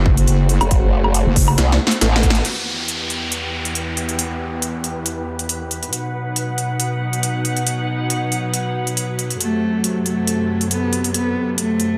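Heavy wobble dubstep at 138 BPM in 4/4, with a half-time feel and a light swing on the sixteenths, this menacing, aggressive passage is cut from a longer piece. It opens on a drop over F#dim, with a square-and-sine wobble bass, saturated and detuned with chorus and overdrive, roaring up front until 1.6 s. A pulse-wave formant-sweep wobble bass carries the low end from 0.6 to 2.4 s, while a punchy electronic kick and a tape-warm big-room dance kit with a punchy snare, crisp hi-hat, crash cymbal and woodblock drive a drum fill into a band accent at 2.3 s. A thick, double-tracked fuzz guitar adds brief stabs in the background, roughened by vintage 12-bit sampler grit and digital delay. From 2.4 s an electronic downlifter falls away as the chords move through Em and B. Throughout, an intimate chamber string section, bowed sul tasto with light vibrato, holds sustained chords that pump against the sidechain, under a sweeping low-pass filter from 2.4 s. 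At 9.4 s a single warm cello takes the melody with expressive vibrato, portamento and digital delay as the harmony returns to F#dim, all in a light reverb.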